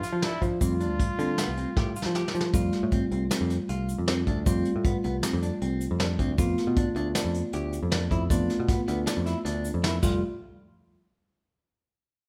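A growling, raspy trumpet voices a brief melody for its opening 2.1 seconds over a tine electric piano, picked clean electric guitar arpeggios, an up-front growly picked bass, a punchy, dark-cymbaled brush drum kit with fills, and a grainy tube shaker in the background, giving this driving, intricate progressive band piece in 5/4, cut from a longer work, the sound of a live group in a large studio room.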